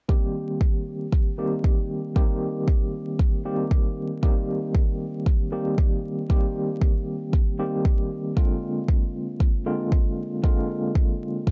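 A dry, gritty recording with vinyl crackle opens this moody, hypnotic deep house excerpt at 116 BPM in C minor, where a deep, layered electronic kick drum sits up front through the full 11.5 seconds beneath mellow, worn and slightly out-of-tune tine electric piano stabs, colored by medium tremolo, 12-bit sampler grit, sidechain pumping, a low-pass filter and tape echo, moving from Cm7 to Bb9 at 8.4 seconds.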